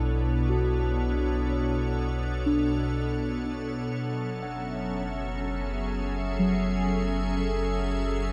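A bright, organ-like pad sustains pure, chorused chords under a filter sweep from the first moment, alongside muted, felt-like synth keys playing intimate arpeggios with chorus and delay in the background and a deep, round sub bass, all moving from Bm9 to F#m9 at 3.9 s in a weightless, warm ambient fragment bathed in a lush, dark hall reverb.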